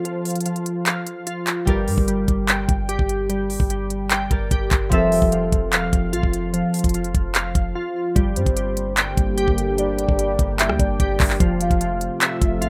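An up-front trap drum kit drives this menacing, brooding half-time hip hop excerpt, its knocking kick, crisp hi-hats, handclaps and rim clicks giving the groove a hard, produced edge. Glassy, detuned digital keys spin arpeggios through chorus, phaser, delay and a filter sweep, while a fingerpicked concert harp rings underneath in a low-passed accompaniment until 8.2 seconds. A deep, boomy 808-style bass with a noise layer enters at 1.7 seconds after a short opening break, its fast-attack notes decaying into darkness. In the second section a soft, octave-layered synth lead adds a round, wave-folded second line with vibrato, and a moody analog pad swells in at 8.7 seconds with slow-attack, full-bodied sustained chords that evolve under chorus. The chords alternate between major-seventh and minor colours, and the whole has the light reverb and rough feel of a home demo.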